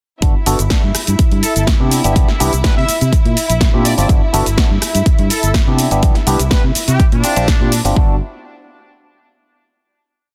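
In this sunny, funky filtered disco house piece at 124 BPM in G major, a barky tine electric piano plays a bright rhythmic chord riff in rootless voicings through a combo amp, lightly overdriven and colored by phaser and sidechain pumping. Underneath, a punchy electronic kick drum, tape-warm and up front, keeps a four-on-the-floor pulse, while an overdriven analog drum machine adds programmed closed and open hats, shaker, rim and a punchy backbeat snare. A round, foam-muted fingered electric bass carries a syncopated line with tube saturation, and a dark, veiled con sordino string section holds soft-attack chords with light vibrato and a touch of vintage 12-bit sampler grit. From 1.4 seconds a close-miked horn section plays short, loose pop-style answering phrases with delay. The harmony moves through Gmaj7, Cmaj7 and Bb6 across a single drop before settling on a final Gmaj7 at 8.0 seconds, all in a dense, heavily limited mix with little reverb.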